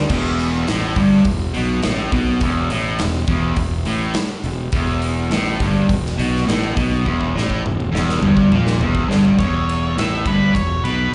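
Heard as a live club gig through the venue's PA, with small-room reverb and a rolled-off top, this raunchy, swaggering cut of blues rock power trio and southern rock struts at 104 BPM in 4/4 over an E5 chord. An up-front, double-tracked overdriven guitar riff with slapback echo sits low, between E2 and B2, over a fuzzy, fingered bass and a big acoustic kit with a bright stone-room sound, tight kick and medium-tuned snare, which rolls through a fill from 7.1 seconds. At 9.4 seconds a dark octave-fuzz lead guitar with distortion and slapback echo breaks into a solo until the clip cuts off at 11.1 seconds.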